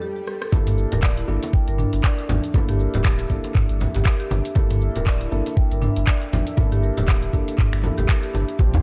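A knocking electronic kick drum sits up front in this driving, hypnotic afro house excerpt at 119 BPM in G dorian, with 57% swing on the 16ths. It arrives at 0.5 s, when a brief electronic swell and a drum fill give way to the drop and the harmony moves from a rootless Fadd9 to Gm69. From there, a deep, round sine sub bass with tube saturation and sidechain pumping anchors the low end, and a moody, detuned sawtooth pad with chorus sits in the background. From the very start, a close-miked marimba plays full-bodied arpeggios and a felt-muted upright piano adds mellow stabs, both carrying dub echo and sidechain pumping. The afro-pop kit fills in with finger snaps, handclaps, metallic hats, rim clicks, shaker and toms under low-pass filtering, while ringing congas played with hard hands sit further back. A dry, medium-tuned djembe lands up front only at the very end, capping a dark, warm production with little reverb.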